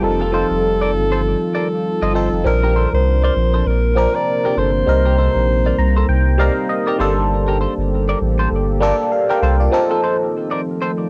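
Afrobeats at 99 BPM with a smooth, sultry swung-sixteenth feel, where a breathy alto saxophone with light vibrato carries the melody until 6.4 s over a biting, warbling FM electric piano colored by phaser and tremolo that adds a fill at 5.5 s, a round, warm sub bass that drops out for the break at 9.7 s, a twangy clean electric guitar riff with analog chorus and tape echo, and a dark, detuned ambient pad sitting in the background, captured as a home cassette recording with light reverb and a dulled top end.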